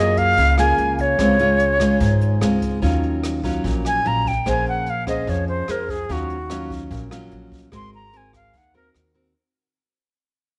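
An airy, vibrato-laden flute opens this romantic, breezy bossa nova excerpt up front alongside fingerpicked nylon-string guitar with audible finger squeak and woody, growly pizzicato upright bass, soon joined by brushed drums with a boomy kick and rim clicks; from 2.8 seconds the slightly unsteady, tongued flute takes a solo over lush ninth chords as the music fades out, all set in a moderate echo-chamber reverb with small-room ambience.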